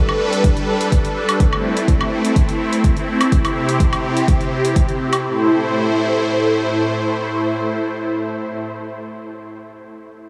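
A lush, detuned supersaw pad with phaser and sidechain pumping holds sustained chords up front through this expansive, emotional progressive house excerpt, joined by a deep, overdriven electronic kick and a quieter, gritty electronic woodblock and hi-hat until the drums drop out by 5.2 s, leaving the pad alone until 8.6 s in a dreamy mix soaked in huge ambient reverb.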